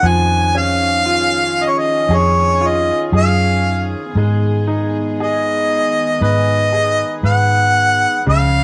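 Light reverb and a studio ambience frame this short, nostalgic slice of an acoustic folk-pop ballad at a slow 58 BPM in 4/4, moving from C#/E# to G#m at 4.2 seconds. Up front, a warm harmonica carries the melody with light vibrato and a distant, roomy tone, while a brilliant, polished grand piano rings with long sustain beneath it. A round, punchy, foam-muted electric bass anchors the low end, and a soft-attack bowed string section holds floating sul tasto chords, keeping the mood intimate.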